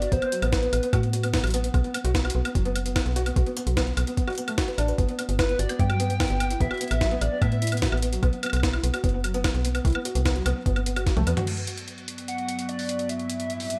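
A glitchy, melancholic IDM cut at 148 BPM in B phrygian, where a felt-muted upright piano with vintage 12-bit grit and delay spins soft arpeggios over a metallic FM bass, an overdriven thumpy electronic kick and a pitched-up, gritty jungle-style kit of high-tuned snare, hi-hat, toms, woodblock and crash, while a warbling, nostalgic chorused lead drifts in and out in fragments before a drum fill at 11.1 seconds hands over to an icy, crystalline glass pad of sustained chords entering at 11.8 seconds, all in a light digital ambience.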